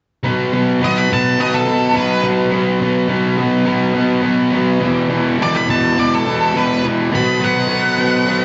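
Heard as a cassette tape of a live gig through the venue's PA, with moderate club reverb and a dull top end, this gritty, smoky rock fragment at 105 BPM in straight 4/4, tuned to A4 = 445 Hz, opens at 0.2 s on a double-tracked, overdriven electric guitar riff up front, joined at 0.8 s by a dark octave-fuzz lead guitar melody with slapback echo, while a smooth tonewheel organ with slow rotary speaker and chorus vibrato slips in behind on sustained chords at 4.9 s as the harmony moves from B5 through Em7 to B7b9.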